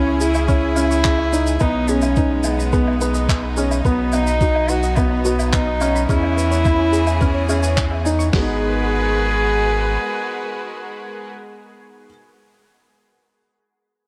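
A straight, steady four-beat groove comes from a lo-fi, sampler-style drum kit of thumpy kick, medium-tuned snare and hi-hat, pitched down, muffled and tape-warm, with a dark, rolled-off layer of brushed shaker, woodblock and handclaps beneath it. This moving, hypnotic piece of piano and strings electronica is cut from a longer work, and a deep, round sub bass pumps against the beat. A soft, felt-muted upright piano repeats a mellow, intimate riff with delay, while a gentle, detuned pluck ripples through chorused arpeggios in the background, pumping as well. Over a clear, biting string section holding bowed chords with light vibrato, a lone cello carries the melody in a nasal, reedy, gut-string voice with an airy bow and delay trails. The drums and pluck drop out by 8.6 seconds and the bass by 10.0 seconds. The cello and strings carry on until 11.3 seconds, and the piano riff rings on until 12.1 seconds in a small, lightly reverberant room.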